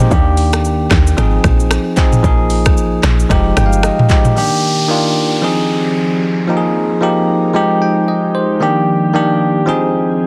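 A bell-like tine electric piano and an up-front afro-pop drum kit open this sunny, joyful afrobeats excerpt at 113 BPM in Eb major, with swung sixteenths, deep kick, metallic hats, finger snaps, handclaps, rim clicks, shaker, toms, vintage 12-bit sampler grit and a softly clipped snare, while a woody, punchy log drum bass plays beneath until 3.9 seconds; the drums stop at 4.4 seconds as an electronic downlifter appears, and from 5.2 seconds a glassy, ethereal FM pad with ensemble chorus and reverb sits in the background beneath the piano's Ebmaj7, Ab6, Bb7sus4 and Fm9 changes and its fills.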